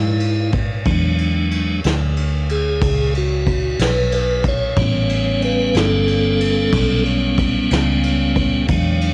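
A swaggering, gritty slow blues rolls along in 12/8 at 61 BPM, where a piping, key-clicking tonewheel organ solos up front through a slow rotary speaker and cassette tape, sustaining chords that move from E9 to A9 at 4.8 seconds over a dark, round, foam-muted fingered electric bass and a vintage brush kit with a punchy kick and dark cymbals that enters at 0.2 seconds, all in a dry home cassette recording cut from a longer piece.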